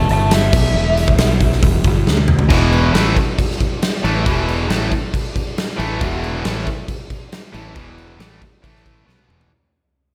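An overdriven slide guitar opens this gritty, smoky blues rock and southern rock excerpt in E minor, singing a short, fingered solo before it drops out at 1.6 s. Beneath it, a fuzz-soaked fingered electric bass growls through the whole clip, while a huge arena drum kit brings punchy kick, a medium-tuned snare, toms and bright crash and hi-hat cymbals, capping each section with a fill. At 2.5 s, a double-tracked, picked electric guitar takes over with a low, crunchy riff that sits up front beside the drums, as the music settles on E5 with a brief move to A5. The straight 4/4 groove drives along at 137 BPM, and the harmony wanders through Emadd11/G, Bsus4 and Em before chords briefly drop away at 2.1 s. Light reverb and small-room ambience frame the trio, and the clip fades out from the riff's entry to its close at 9.5 s.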